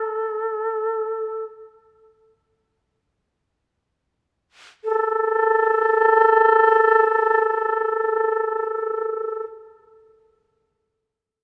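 Calm and austere, this excerpt of traditional Japanese chamber music features a lone bamboo shakuhachi, airy and reedy with a chiff, tongued notes and vibrato, sitting up front in light reverb around A4, slowing over the first 4.8 seconds before a second section carries it to its final note at 9.4 seconds.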